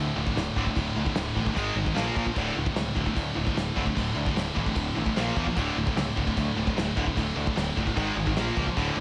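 An overdriven electric guitar leads this dark, heavy metal clip, its bright, picked riff sitting in the low register over a straight 4/4 pulse at 150 BPM, tuned slightly flat of standard pitch to A4 = 438 Hz. A double-tracked, high-gain guitar with a bright distorted edge doubles the riff, while a scooped high-gain guitar plays further back in the mix. The riff moves through the power chords D5, G#5 and Bb5, returning repeatedly to D5. Beneath it, a growling picked electric bass, both direct and amped, adds overdriven grit an octave lower. A soft brush drum kit enters at 0.3 s, sounding smooth and rolled-off in a small room, with a punchy kick, a medium-tuned snare and crash cymbal. A light reverb surrounds this brooding 9-second passage, which is cut from a longer piece.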